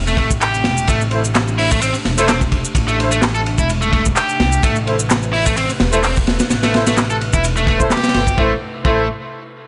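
A gritty, raw breakbeat excerpt with a dark, rolled-off top end and light studio reverb, sitting in A minor at 128 BPM with a slight swing on the sixteenths. Up front, a crunchy, saturated breakbeat kit with a tight kick and dim cymbals drives alongside tape-warm electronic shaker and handclaps, while a thumpy, woody upright bass anchors an A minor chord. A biting overdriven guitar riff with delay cuts through, mellow soft-attack brass stabs with delay enter at 1.1 seconds, and a warbling, detuned lo-fi pad holds sustained chords in the background with chorus and sidechain pumping.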